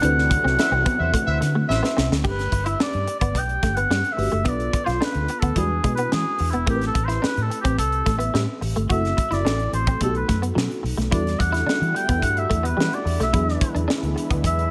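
A straight 4/4 groove at 108 BPM drives this breezy, urban slice of polished 1980s jazz-funk pop in G major, where a crisp fusion drum kit with a high-tuned snare, tight kick and gated reverb sits up front beside a dark, round, punchy muted fingered bass, while a clean, compressed semi-hollow guitar riff, a dreamy FM electric piano with tremolo and analog chorus, and a thick, warbling background pad frame a brief smooth-topped horn line from 0.6 to 2.1 seconds before a drum fill leads into a roomy, lightly vibrato-laced oboe solo from 2.2 seconds over rich seventh and extended chords.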